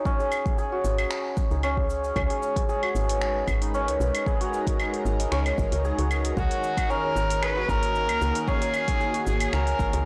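A loose 16th-note swing drives this hypnotic organic downtempo fragment at 114 BPM in 4/4, with a deep, tape-warm electronic kick and an afro-pop drum kit of claves, finger snaps, metallic hats and shaker carrying the groove from the very start, the snare softly clipped. A shimmering, hammered santur sits up front from the opening, spinning arpeggios through a tape echo, while a woody, round FM bass enters at 0.8 seconds with dark, quickly decaying notes that pump with sidechain compression and carry transformer saturation. At 2.4 seconds an airy, breathy pad drifts in with slow-blooming sustained chords, thickened by chorus and phaser and breathing with its own sidechain pump. The harmony moves from F#5 to G#m7 and then D#m7 just as a clear, bowed kamancheh takes up the melody at 6.4 seconds, its focused tone gliding with vibrato and portamento under a delay. The whole mix sits in a light reverb but comes across blown-out and overdriven, giving the gentle material a gritty, saturated edge.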